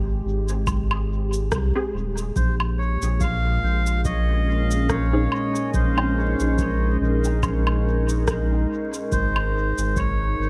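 Ambient dub, spacious and meditative, where a warbling, detuned tape-like pad holds sustained chords over a round, up-front sub bass with tube saturation, while a very quiet electronic kick and an electronic cabasa, woodblock and rim click with dub echo set a gently swung pulse, a muted, phased chord stab with 12-bit sampler grit sits in the background from 1.8 to 6.1 seconds, and a reedy, breathy melodica enters at 2.4 seconds, the whole piece resting on a bed of light reverb and vinyl crackle.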